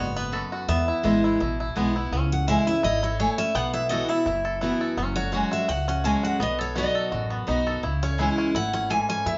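Recorded live in one room with a wet studio reverb and a softened top end, this lively, rustic bluegrass excerpt swings lightly at 168 BPM as a pair of up-front picked steel-string guitars play the melody, bright and full-bodied on a dreadnought, and the accompaniment, bright with fresh strings and finger squeak, over a twangy, percussive fingerpicked banjo playing arpeggios, a thumpy, dark gut-string upright bass and a bright mandolin's double-string stabs sitting in the background from 0.3 s to 9.0 s.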